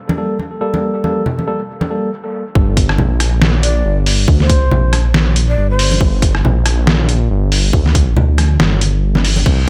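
Swung half-time sixteenths at 139 BPM drive this brooding, cavernous deep dubstep piece in G minor, where ringing congas and clean, tremolo-laden tine electric piano stabs, both carrying dub echo, open on Gmadd9 before a brief stop. At 2.6 s the drop lands on Gm with an up-front, rumbling detuned saw bass and a tight, layered electronic kick. A gritty, pitched-down sampler-style trip hop kit of hi-hat, ride cymbal, rim click and snare joins at 2.8 s, while a breathy, hollow shakuhachi sounds through dub echo from 3.6 s to 6.0 s.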